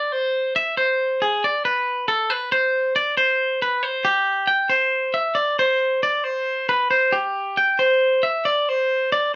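In a straight 7/8 pulse at 274 eighth-note beats per minute, this restless, wistful rock fragment features a lone twangy electric guitar, bright, clean, picked and compressed, sitting up front in a moderate studio reverb as it plays within a range of G4 to G5, moving into a new section at 2.5 seconds and playing on until 9.3 seconds.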